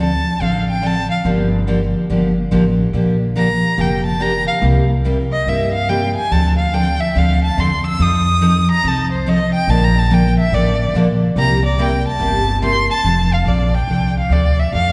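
A lively, playful gypsy-jazz swing in F major at 142 BPM opens with a bowed violin soloing up front in a smooth, vibrato-rich voice, over a bright, full-bodied picked steel-string guitar and a woody, thumpy pizzicato upright bass on gut strings. The violin solo runs to 13.1 seconds through a Dm7, Gm7, Bb6, C7, Dm7, F7, Bbmaj7, C7 progression, landing on an F6 as a new section begins. The trio sits in a wet concert-hall reverb that lends the cut-off passage a spacious, church-like ring.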